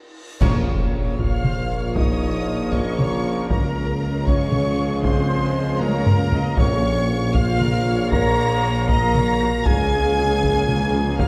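A very quiet reverse cymbal rises into a huge, bright impact at 0.4 seconds, where the full orchestra enters with a taiko ensemble struck with hard sticks, a brief crash of clash cymbals and concert bass drum, and a timpani hit on Bb2. This is an epic, cinematic film score in Bb minor, heroic and dark, moving in a slow 6/8 at 78 BPM as the harmony alternates between Bb minor and Db6. A close, expressive studio violin section carries the vibrato-rich melody up high, shadowed by a pure, distant flute section and a very quiet symphonic violin line, while a lush viola section fills the accompaniment. Mellow French horns, a dark, roomy woodwind section and a very quiet, bright trombone section hold sustained chords, with a mellow solo trumpet adding stabs. Cellos and double basses drive a deep bass alongside a clear tuba, and a drum fill leads to a second timpani stroke at 6.6 seconds before the passage runs on to 11.3 seconds. 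A moderate scoring stage reverb surrounds the dark, warm production.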